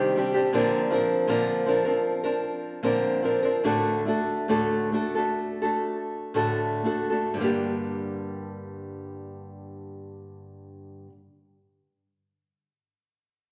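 Pop in G minor, emotional and longing, played by a solo nylon-string guitar at a slow 57-80 BPM in 4/4, with the pace slowing from 0.5 to 7.4 seconds. The fingerpicked guitar sounds bright, small and up front, with fresh strings, moving through Cmadd9, Bbadd9 and D/A before settling on Gm at 7.4 seconds. A wet recital-hall reverb surrounds it, giving the sense of a church or concert hall in this short cut from a longer piece.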